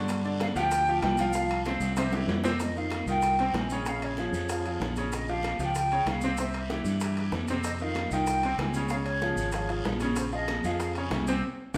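Salsa with a passionate, danceable drive, cut from a longer piece: a distant, hollow concert flute with vibrato and a crisp attack carries the melody over a brilliant, polished grand piano whose action noise is audible up front, while a fingered electric bass sits direct and amped beneath them. The percussion stays low in the mix, with ringing metal-shelled timbales and a raspy guiro in the background, thin high-tuned congas struck with hard hands in a large room, tight bongos played with soft hands, and grainy maracas. A drum fill at 2.1 seconds leads into the main section over minor-ninth and seventh chords, and a band accent at 11.4 seconds closes the passage, all bathed in a wet studio reverb as if the band were playing live in one room.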